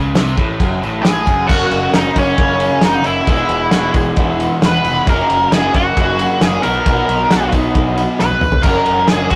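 A straight 4/4 groove at 134 BPM drives this confident, sunny classic rock passage in F# mixolydian, cut from a longer piece. A cloth-damped, thuddy drum kit sits up front with a fat snare, tight kick and dark cymbals, firing a fill at 8.2 s, while a growling, overdriven picked bass and a distant, jingly tambourine sit alongside three riffing electric guitars: a biting, tremolo-treated one in the background, a bright, compressed one, and a very quiet, double-tracked cranked stack. From 1.0 s a dark octave-fuzz lead guitar with wah takes the melody up front, joined in two brief spots by a clean lap steel with slide and volume swells, all captured with tube saturation in a rough rehearsal-room sound and moderate reverb.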